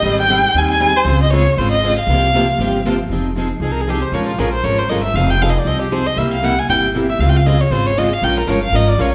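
Bathed in the lush reverb of a recital hall, this fiery, virtuosic snippet of swinging jazz manouche sets an expressive bowed violin up front, singing with vibrato and portamento into a solo from 3.1 s, over two picked steel-string acoustic guitars, one bright and boxy with finger squeak and the other full-bodied, and a dark, thumpy pizzicato upright bass with woody gut-string tone.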